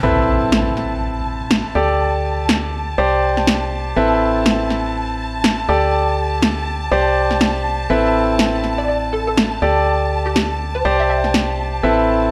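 Dry and gritty, with a hardware edge and a moderate plate reverb around it, this short cut from a longer piano house track moves at 122 BPM in A minor with a loose sixteenth-note swing. A bright, brilliant concert grand sits up front playing a riff through a low-pass filter and analog delay, its deep bass register giving the riff weight. Beneath it, a dark, organ-like FM bass with a fast, decaying attack holds the low end, while a lush symphonic violin section sustains soft-edged, vibrato-rich chords high above. A punchy, layered, tape-warm electronic snare with studio reverb drives the groove from 0.5 s, and an electronic impact hangs in the background over the opening two seconds. At 8.8 s a hollow, bouncy square-wave pluck enters with a warbling, detuned vintage character, carrying a brief melody through ensemble chorus and analog delay over the cycling Amadd9, Dsus4 and Csus2 harmony, leaving a bittersweet, soulful mood.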